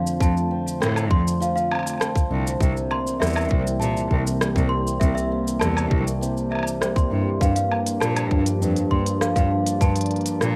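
A biting, bowed cello bass with light vibrato anchors this playful, delicate folktronica excerpt at 100 BPM in 4/4, over a tight, up-front electronic kick and a tape-warm kit of crisp hats, rim click, shaker and woodblock, while shimmering hammered dulcimer arpeggios and a sweet, bell-like celesta line, both touched with digital delay, ring above a dark, warbling, nostalgic lo-fi pad with chorus that sits in the background as the chords move from F6 to C7 at 2.6 seconds and Gm7 at 7.4 seconds.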